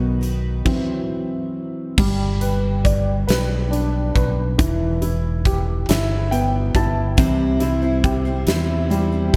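This six-eight pop ballad, cut from a longer piece, moves at a slow 46 BPM in 6/8 with a dramatic, aching mood. A polished baby grand piano sits up front with an analog chorus, taking a solo spot at the opening and a short fill later over chords that move from B through Esus2, G, Em and C. A picked steel-string acoustic guitar adds jumbo-bodied arpeggios with fresh strings and audible finger squeak, bathed in lush chorus and diffuse ambient delay; it drops out at 0.7 s and returns at 7.2 s. A fingered electric bass gives a punchy, direct low end, while a huge arena drum kit with a fat snare, bright cymbals and a punchy kick fills the hall-like space. A stop in the band lets the piano stand out until the fuller section arrives at 2.0 s, and light studio reverb gives the mix its gloss.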